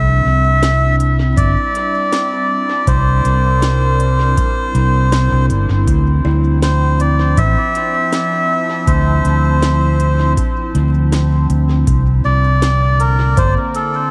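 Vinyl crackle and light reverb frame this spacious, meditative ambient dub excerpt at 80 BPM in 4/4, tuned to A4 = 436 Hz, where a reedy, breathy melodica carries the melody through dub echo over a warbling, nostalgic lo-fi pad with chorus and phaser holding C9 and Dm9 chords, a very quiet, airy kalimba plucking arpeggios, and a dark, round fingered electric bass up front; an overdriven drum kit with a woody snare and crisp hi-hats, also treated with dub echo, enters at 0.6 s, and a deep analog electronic kick joins at 1.4 s.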